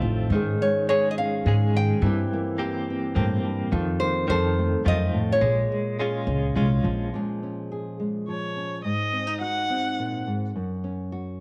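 Opening with a bright, fingerpicked nylon-string guitar accompaniment, a woody, thumpy pizzicato upright bass up front and clean, compressed electric guitar arpeggios with tremolo, this melancholic, reflective acoustic folk-pop ballad in Bb minor at 106 BPM in 3/4 soon adds a dark, full-bodied second nylon-string guitar carrying the classical-style melody with audible finger squeak, before a smooth, bowed viola with vibrato sings a warm solo line from 8.3 s over light reverb and studio ambience while the accompanying guitar carries on to the close of this fragment of a longer piece.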